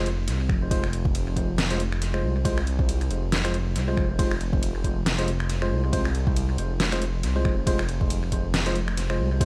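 A dark, detuned sawtooth bass dominates this brooding deep dubstep excerpt, its rumbling, beating unison tone sitting up front between F1 and C2 and sustaining over a single F minor chord. A worn, slightly out-of-tune tine electric piano plays clean stabs from Ab3 to C5, heard as if through built-in speakers and trailed by dub echo. The dubstep drum kit enters at 0.1 seconds with finger snaps, hi-hat, ride cymbal and a deep snare, all carrying tape echo and the air of a large room. An overdriven electronic kick, layered and re-recorded in a small room, joins at 0.5 seconds. The tempo is 138 BPM in a half-time feel with a 57% swing on the sixteenths. The mix is dry on reverb but heavy with echo, and vinyl crackle adds to its cavernous atmosphere.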